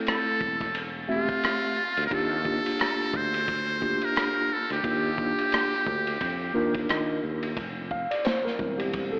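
A swung, relaxed jazz-hop groove from a gritty, saturated breakbeat kit with dark cymbals, a growly fretless bass and a mellow tine electric piano moving from Fmaj9 to Ebmaj9 carries a buzzy, close-miked muted trumpet melody with light vibrato, scooped notes and analog delay until 6.9 seconds, after which the electric piano takes a brief solo over Fmaj7sus2 from 7.6 seconds, all set in a dreamy, reverb-soaked mix with an AM radio sound in this short cut from a longer piece.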